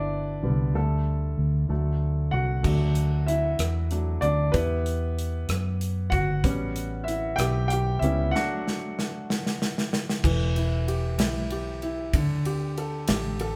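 Tender and swaying, this short excerpt from a longer six-eight pop ballad moves at 63 BPM in 6/8, with a straight feel. A smooth, vintage-toned grand piano carries the accompaniment up front throughout and is featured as the solo voice from the start to 10.2 seconds, while a dark, round, foam-muted fingered electric bass, amped and punchy, anchors the low end from the opening. The studio drum kit enters at 2.6 seconds with a punchy kick, a medium-tuned snare, rim clicks, hi-hat, ride and bright crash cymbals, and a break from 8.3 to 10.2 seconds is filled by a drum fill. The harmony moves from G through Dsus4 and D to Em and A7, landing on D before the final stretch returns to Em and Dsus4. The band sounds as if playing live together in one room, bathed in a wet studio reverb.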